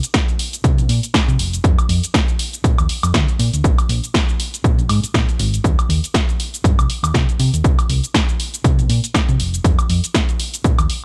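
A punchy, tape-warm analog drum machine opens this feel-good, joyful filtered disco house excerpt with swung hi-hat, shaker, snare and woodblock pumping under sidechain, soon joined by an up-front, overdriven layered electronic kick re-recorded in a large room and, from 0.6 s, a dark, round hollow-body fingered electric bass that pumps along in a dry mix.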